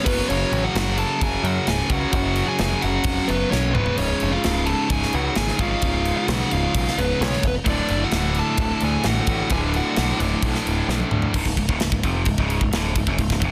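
A growling, overdriven electric bass sits up front beside a tight, polished metal drum kit, driving this epic, heavy metal excerpt in straight 4/4. The drums ring in a big, airy room, with shimmering cymbals, a medium-tuned snare, a tight kick and toms, and fills land near 3.5 and 10.9 seconds. Behind them, two picked, distorted rhythm guitars with a crisp edge play the riff together, one dropping out at 11.3 seconds while the other carries on to the end. Above, a dark, smooth lead guitar with overdrive carries the melody, joined in the background by a high-gain, distorted second line with tape echo, and both leads stop at 10.2 seconds. The harmony moves from F#5 through C# and D before settling back on C# as a short closing passage begins, all within a dense, heavily limited modern master.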